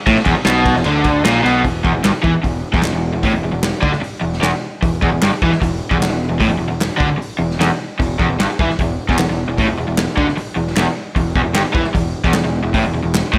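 Lightly reverberant studio ambience frames this rowdy, swaggering garage rock excerpt, with the double-tracked, overdriven guitar riff punching up front at 152 BPM in a straight 4/4. An E5 chord opens the excerpt before the harmony drops away at 1.6 s, leaving the riff to drive over fuzz-soaked picked electric bass. The bright stone-room drum kit, dark and smooth with a punchy kick and medium-tuned snare, plays hi-hat, ride and snare, while crisp, close group handclaps join at 0.5 s.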